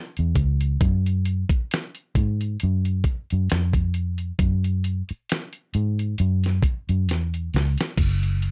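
Smooth and sultry, this short neo-soul and R&B cut moves at a slow 67 BPM in 4/4, with a light sixteenth-note swing and tuning pitched slightly sharp at A4 = 445 Hz. A vintage muted fingered electric bass carries the low end from 0.2 seconds to 8.5 seconds, its dark, round, foam-muted tone sitting up front between F#1 and G#2. Alongside it, a dusty soul sampler-style drum kit plays kick, snare, hi-hat, finger snaps and crash cymbal, compressed and gritty, with a thumpy kick and a fat snare placed close in the mix. A drum fill arrives from 7.1 to 8.0 seconds near the end of the passage. The sound is dry with little reverb, carrying the coarse character of a hardware recording, and the clip is cut from a longer piece.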